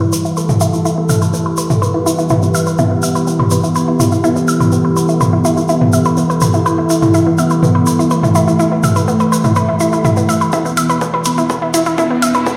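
A straight 4/4 pulse at 124 BPM drives this hypnotic, melancholic melodic techno passage in E minor, where a fat, full-bodied analog lead with vibrato and dub echo, a deep, dark, detuned ambient pad and a nasal, round analog pluck arpeggio with digital delay all pump against the sidechain under filter sweeps and a wet concert-hall reverb, while a grainy tube shaker and a tape-warmed techno drum kit of hi-hats and toms carry the groove until an electronic kick drum and a drum fill arrive at 10.5 seconds to launch a build-up, capped by a background riser from 11.3 seconds.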